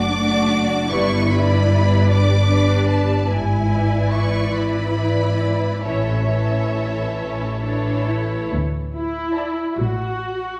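Classical, a slow, lyrical and tender romantic movement for string orchestra in 6/8 at around 44-52 BPM, flowing with rubato in D major through a short passage cut from a longer piece. One violin section sings the expressive, vibrato-laden melody above a second violin section's rich, smooth and distant line, while the violas give an even, smooth-topped accompaniment, the cellos a soft-attacked bass, and the double basses a woody foundation that sits up front in the lush, bowed ensemble. A new section arrives on a D chord at 8.5 s and the violins stop at 9.7 s, leaving the lower strings to ring on in a dark, warm stone-room reverb.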